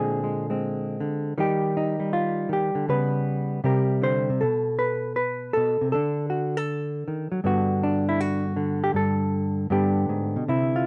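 Closely miked and lightly reverberant, this short solo jazz excerpt features a dark, clean, fingerpicked hollow-body electric guitar up front, swinging with playful, sophisticated rubato through rich chords from Bb9 and Ebadd9 to a closing Gmaj9 and G by 9.7 seconds.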